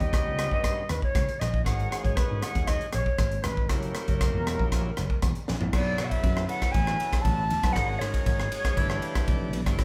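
Recorded as a band playing live in one room with a light reverb, this intense, slick slice of electric jazz fusion sits in a straight 4/4 groove, cut from a longer piece. A concert flute carries the melody with an airy, expressive tone, tongued notes and vibrato, heard from a distant spot in the room. Beneath it, a tonewheel organ supplies full, shouting chords through a slow rotary speaker and light overdrive, while an amped, punchy slap bass sounds bright and electric down low. The acoustic drum kit sits up front with a polished studio-room sound, a high-tuned snare and a hard-hitting kick, working across cymbals, rim clicks and toms. A drum fill at 5.5 seconds leads into a new section at 5.7 seconds over suspended and altered chords, and the organ takes a fill from 8.8 seconds to the close.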